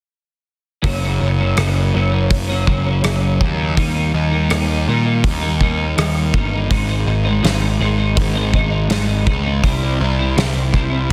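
Quiet-loud alternative rock in Gb lydian at 82 BPM, this restless, anthemic excerpt sets a bright, twangy twelve-string electric guitar playing arpeggios through an ensemble chorus against a fuzzy, overdriven picked bass and a loose acoustic drum kit with a punchy kick, medium-tuned snare, rim clicks and hi-hat in a pumping room, all up front under light reverb and a dense, heavily limited master, with chords moving from Gb through Eb and Ab to C between 0.8 and 11.1 seconds.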